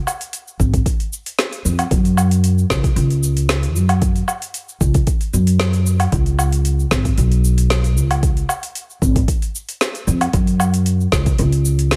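An afro-pop drum kit opens this organic downtempo piece at 0.1 s, its cabasa, hi-hat, snare drum and woodblock carrying a produced, electronic character, with metallic hats and a woody snare roughened by overdrive and the boxy color of a small room. At 0.6 s an upright bass and an electronic kick drum join together, settling into a straight 4/4 at 114 BPM. The plucked bass sits up front, dark and thumpy, with the bite of steel strings as it moves between G#1 and F#2. The deep electronic kick is also overdriven and forward in the mix, and it drops out at 11.4 s while the bass and kit carry on to the end. With little reverb, the sound stays close and dry, and the steady groove gives this piece, cut from a longer work, a hypnotic, warm mood.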